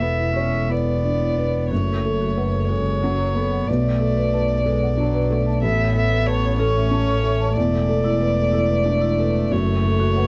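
Tender and intimate, this rubato neoclassical fragment in 6/8 sets a woody, distant violin melody over a felt-muted upright piano with audible action noise, a floating sul tasto viola, vintage, band-limited marimba arpeggios in the background and a close, airy-bowed double bass, held in light reverb within a dark production.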